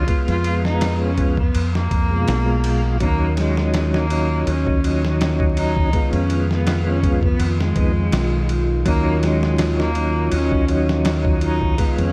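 Lightly swung 16ths at 82 BPM in 4/4 drive this melancholic, hypnotic trip hop excerpt in Eb minor, where a gritty, thumpy sampler-style drum kit of kick, snare and ride and a round, dark dub bass sit up front beneath a smooth tonewheel organ with chorus vibrato, slow rotary speaker and tremolo, a distant, biting bowed cello melody trailed by tape echo, and, from 4.3 s, a warbling, lo-fi pad in the background, over chords alternating between Fdim and Ebm7 amid vinyl crackle.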